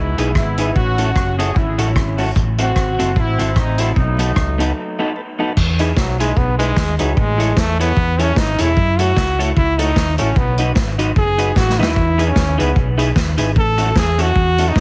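A warm horn section opens this joyful, bouncy ska excerpt with the melody, trailed by tape echo, while a round hollow-body short-scale fingered electric bass holds down the low end. Moments later, at 0.2 seconds, three parts join: a vintage drum kit sits up front with dark cymbals, a tight kick and gritty saturation; an electric guitar through a small old amp adds slightly broken-up accompaniment bathed in spring reverb; and a smooth tonewheel organ plays stabs with vibrato in the background through a stopped rotary speaker. The horns fall away at 5.2 seconds, and after a brief break a brilliant, forceful trombone takes a solo from 6.0 seconds to the end, its vibrato and tape echo cutting through the swung feel. A drum fill arrives at 11.6 seconds as the harmony cycles through major sevenths, sixths and a minor seventh. Studio reverb and heavily compressed radio-style processing, with tape saturation and vinyl crackle, give the mix an aged, lo-fi character.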